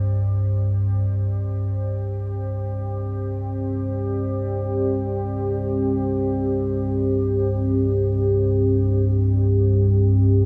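Dark and cavernous, this free-time dark ambient drone, tuned to A4 = 445 Hz, sets a mellow, detuned sawtooth pad holding sustained chords over an ominous, rumbling low drone, both up front and soaked in lush hall reverb, while a bubbling, resonant filter texture sits in the background only until 1.1 s, with a faint mains hum beneath.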